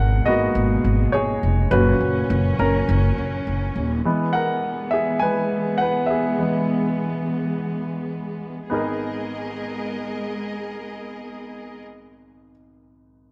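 A straight, steady 4/4 pulse drives this earnest pop fragment, cut from a longer piece. A polished baby grand piano sits up front, featured in a solo turn through 8.7 seconds and carrying the accompaniment across the whole passage, which runs to 13.3 seconds. Beneath it, a pizzicato upright bass with gut strings gives a woody, thumpy low end, but only until 4.0 seconds. A lush studio string section holds bowed, sustained chords with even vibrato and a smooth top, dropping out of the texture at 11.8 seconds. The harmony moves through a few broad chord changes before circling back to its opening chord, and a light small-room reverb gives the sound a close, present feel.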